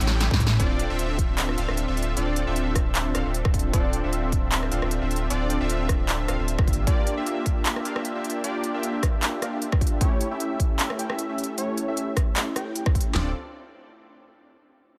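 Swung, half-time 4/4 at 153 BPM opens with a drum fill that launches this bittersweet, dreamy future bass in D minor, where a fat, detuned sawtooth polysynth riff pumps with chorus and dub echo as a filter sweep runs through it from 0.6 seconds, a deep, thick saturated sub bass drops out at 6.9 seconds, and two punchy, up-front big-room dance kits drive it all, one overdriven with a huge snare, kick and toms, the other carrying crisp hats, handclaps and rim clicks with a small-room tint, over dry Dm7, Gm7 and A7 changes.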